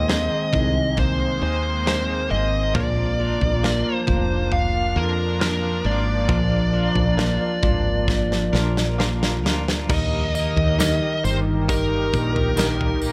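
Hopeful and emotional, this pop ballad moves at a slow 68 BPM in 4/4 with a straight feel in Eb major, a short section cut from a longer piece. A dark, distorted lead guitar sits up front carrying the melody, while a bell-like tine electric piano supplies bright, clean accompaniment. Beneath them, a sweeping resonant pad holds sustained chords with a detuned sawtooth tone, slow attack and chorus, and a direct-recorded clean electric guitar picks twangy, compressed arpeggios with tremolo. A woody fretless bass gives a growly, round low end with a subtle chorus, and a modern studio drum kit with a punchy kick and medium-tuned snare plays a fill from 8.1 to 9.9 s. At 9.9 s the harmony arrives on Eb after moving from Abadd9 to Bb, and a jingly, distant tambourine enters in the background, all set in light reverb and studio ambience.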